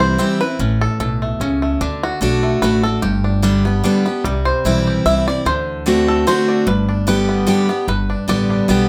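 Bluegrass in a lilting three with a light swing, driving and virtuosic, this short cut from a longer piece features a twangy, percussive five-string banjo played with fingerpicks carrying the melody as a solo throughout, touched with plate reverb. A bright, full-bodied picked dreadnought acoustic guitar sits up front with the accompaniment, while a woody, thumpy pizzicato upright bass anchors the low end. The chords move through C, A, D, G, C, D7 and back to G in a small, moderately reverberant room, with the phrase starting over at 7.9 seconds.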